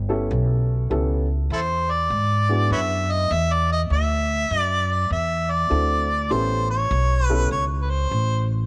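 A swung 4/4 shuffle at 100 BPM, with 64% swing on the eighths, drives this laid-back, rollicking electric blues fragment in A mixolydian, cut from a longer piece. An upright bass sits up front from the start, plucked pizzicato on steel strings with a woody, growly tone. A dark, mellow upright piano supplies natural-sounding accompaniment with short sustain until about 7.5 seconds. At 1.5 seconds a harmonica takes the solo melody, its warm, overdriven voice up front and colored with vibrato and tongue slaps in a jazz style. The harmony moves from A9 to E9, then D9 and back to A9, heard in a small room with light reverb.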